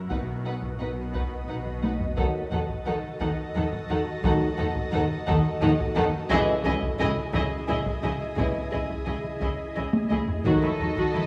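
A wet scoring-stage reverb wraps this uneasy, tense stretch of suspense film score, cut from a longer piece and moving at 87 BPM in 3/4 with a straight feel. From the start, a close, dry taiko ensemble struck with hard sticks sits beneath an ethereal pad with a slow attack, chorus and phaser, while a dark double bass section and a warm cello section hold the low end. Bowed sul tasto strings fill the middle: woody, distant violins carry the melody and a second line, dark violas play accompaniment in the background, and a second, very quiet cello section plays an intimate riff. At 2.2 seconds, after a taiko fill, the harmony turns from B to D#dim, and a mellow French horn section and a roomy trombone section enter with sustained chords. A high chamber violin texture sits in the background until 5.9 seconds, the chords pass through C#madd9, and a second taiko fill brings the return to D#dim at 10.4 seconds, where the chamber violins come back in.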